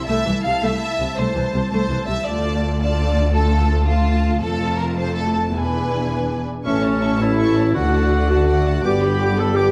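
Heroic and adventurous, this cinematic passage in 12/8 opens with a lush string body: violins carrying a focused, vibrato-rich melody over a smooth, even second violin line, expressive soft-attack violas, close cellos and woody double basses, set in a reverberant recital hall. At 6.6 s dark French horns enter on sustained chords in the background. At 6.7 s they are joined by clear, close-miked trombones, a mellow tuba on the bass and a distant, roomy oboe playing a second line.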